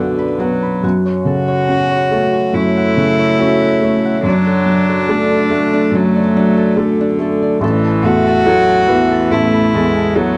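Neoclassical piano and strings in F# minor at a rubato 71 BPM, this fragile, melancholic excerpt sets a soft, felt-muted upright piano with audible action noise up front beside a sul tasto viola with an airy bow and ringing, fingerpicked Celtic harp arpeggios carrying a slapback echo, while a rich, floating cello enters at 1.3 seconds with a second line, all captured in a dry, close 1970s-style small room over chords moving from Bm and F#m to D/F# and Asus2.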